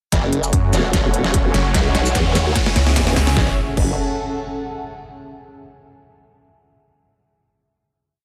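The mix sits in light digital ambience, and this short, complete piece of heavy, aggressive wobble dubstep runs at 148 BPM in a half-time feel, moving from F# minor to C# minor and back. A punchy, tape-tinged electronic kick and a layered dubstep kit of deep snare, crisp closed hats, shaker and crash drive a build that includes a drum fill. Up front, a saturated formant-sweep wobble bass with chorus and overdrive plays modulated phrases. At 0.5 s it is joined by a growling, distorted sawtooth bass with a resonant moving notch and chopped phrases. Behind them, a lush supersaw pad and a warbling, lo-fi tape-like pad with chorus and built-in reverb both pump with sidechain, the tape pad shifting its chords slowly. A riser enters at 1.2 s and lifts the build into an impact, and the piece lands on a final F# minor chord at 3.4 s.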